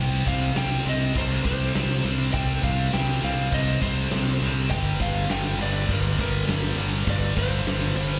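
Hard rock with an aggressive, menacing edge, this short excerpt moves at 101 BPM in a straight 4/4, with the chords shifting from C5 to G5 at 4.7 seconds. A growly, overdriven fuzz bass sits up front and carries the low end, its fingered tone bright and punchy. Three high-gain guitars stack the riff: two scooped parts, one of them double-tracked and very quiet, plus a distorted guitar with slapback echo tucked in the background. Over them, a slightly broken-up, compressed lead guitar plays the melody with slapback echo and analog delay. A huge arena kit enters at 0.3 seconds with a fat snare, a punchy kick and ride cymbal, sounding natural in a big room. The whole thing comes across as a live gig heard through the venue's PA, carrying a touch of club reverb.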